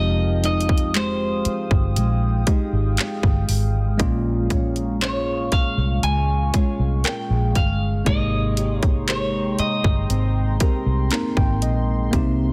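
Contemporary R&B at a slow 59 BPM in 4/4 with a straight feel, this sensual, moody excerpt from a longer piece moves between Fm9 and Bbm7. A bright, twangy clean electric guitar carries the melody through spring reverb and tape echo until 11.6 seconds, over a worn, slightly out-of-tune tine electric piano that adds a fill from 10.6 seconds. A thumb-plucked nylon-string guitar spins classical-style arpeggios with tape echo, while a deep, dark sawtooth pad holds sustained chords with chorus, built-in reverb and sidechain pumping. A woody, FM-based mallet-like synth pluck sits in the background with chorus and tape echo until 8.5 seconds. Underneath, a round, foam-muted vintage electric bass and an up-front trap drum kit with a hard-clipped kick, bright hi-hats and handclaps anchor the low end and rhythm, all in a dry, dense, heavily limited modern master.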